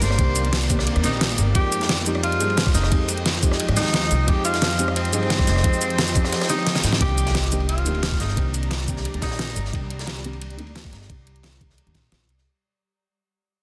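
Liquid drum and bass at 176 BPM in C minor, dreamy and lush, cut from a longer piece. A clear, distant tenor saxophone carries the jazz-style solo melody with vibrato and scooped notes, touched by vintage sampler grit and digital delay, until 9.7 seconds. Beneath it, a deep, mellow chord stab and a shimmering, ethereal ambient pad with octave-up shimmer and built-in reverb move from Cm9 to Fm9, while a woody, growly pizzicato upright bass anchors the low end. The drums layer a thumpy, pitched-up electronic kick, an overdriven pop kit placed up front with a deep snare, and a crunchy, saturated breakbeat kit with dark cymbals set in the background. After the kick drops out and a drum fill and band accent lead in, a quiet sub drop lands at 7.0 seconds as the harmony returns to Cm9 and the piece fades out, with filter sweeps on the stab and pad. The dense, heavily limited master sits in light studio reverb.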